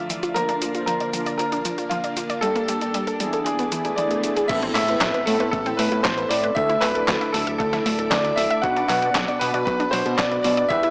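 A bright, up-front baby grand piano carries the melody in this melodramatic, nostalgic italo disco excerpt at 116 BPM, over mellow string-machine chords, a round analog pluck arpeggio, nasal synth-brass stabs and a clean 12-bit drum machine with handclaps and cabasa, before a swell rising from 3.7 seconds and an impact at 4.5 seconds bring in a fat, ring-modulated analog bass and a thumpy background kick as the music settles into A dorian, all with a dry, gritty, small-speaker sound.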